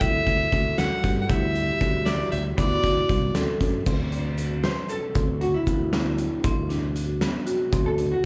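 Driving along in a straight 5/8, this bright, progressive instrumental is cut from a longer piece and heard live through a club's PA, carried by a gritty, oversized low-tuned drum kit with a fat snare and punchy kick, a growly fretless bass, and a grainy egg shaker tucked in the background. A nasal, reedy fiddle with a gut-string tone leads the melody up front until 3.3 seconds, while a ringing vibraphone with slow motor vibrato, woody rosewood marimba arpeggios and a double-tracked, dark, clean hollow-body jazz guitar fill out the middle, all touched with slapback echo. The harmony moves from Emadd9/D to D7 at 2.6 seconds, and from 3.9 seconds the compressed hollow-body guitar takes a solo.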